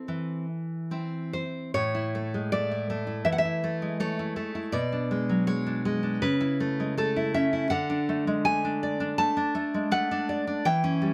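A warm, full-bodied nylon-string guitar, fingerpicked and up front in light reverb, carries this short, melancholic and intimate romantic excerpt for solo classical guitar in a free rubato 4/4, opening on A minor before turning to A major at 1.7 seconds and moving through G#dim/B and A/C# to a final D chord at 7.7 seconds.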